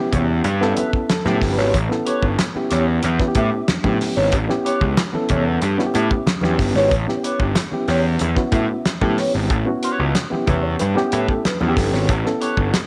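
A straight 4/4 funk groove rides on a cloth-damped, thuddy drum kit with a fat snare and tight kick, while ringing congas sit in the background and a fuzzy, overdriven picked bass punches up front in a playful, gritty excerpt cut from a longer piece. A reedy electric piano with fast tremolo plays stabs over an A9 chord and adds fills at 0.8 and 10.1 seconds, as a clean, scooped electric guitar with wah and lush chorus fills in the accompaniment. A moderate echo-chamber reverb and small-room ambience lend the mix a close, roomy feel.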